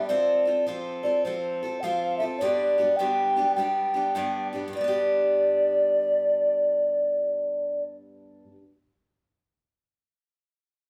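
Recorded live by a band in one large, reverberant studio room, this down-home, heartfelt country fragment swings at 103 BPM in G mixolydian, with a hollow, clay-toned alto ocarina carrying the melody up front with a crisp chiff and vibrato, while a bright, freshly strung picked steel-string acoustic guitar sits further back with audible finger squeaks, moving from F to G and playing on until 8.6 seconds after the ocarina stops at 7.8 seconds.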